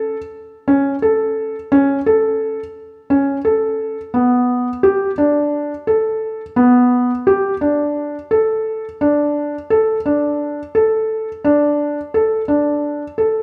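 A felt-muted upright piano plays alone, mellow and intimate and close up front, ranging between B3 and A4 in a hypnotic yet urgent contemporary instrumental passage at 173 BPM in 7/8, its soft tone set in a moderate recital-hall reverb as the music moves into a new section at 4.1 seconds and runs on until this excerpt of a longer piece is cut at 13.4 seconds.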